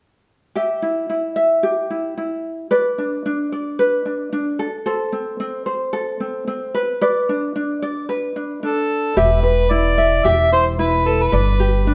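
Carefree and easy-going, this short pop excerpt moves at 111 BPM in 4/4 with a gentle sixteenth-note swing. A fingerpicked ukulele opens at 0.6 seconds, light and up front, carrying the accompaniment through chords of Em, Bm/D, Am and Bm7/D. At 8.6 seconds a mellow harmonica takes the melody as a pop-style solo, its tone distant and roomy even though it sits up front. The pizzicato upright bass joins at 9.2 seconds, woody and dark with steel strings, as the harmony returns to Em and moves to G. The band plays live together in a stone room with moderate reverb, and the clip is cut from a longer piece.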